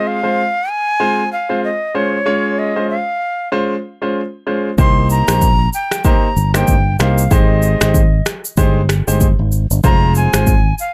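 Sunny and romantic, this afrobeats excerpt opens with an airy, chiffy jazz flute carrying the melody through a digital delay over a clear, intimate concert grand piano with audible action noise, before a punchy fingered electric bass and an electronic, tape-warm afro-pop kit of deep kick, finger snaps, rim click and shaker join at 4.8 seconds, all sitting up front in a dry, close sound with a swung sixteenth-note feel.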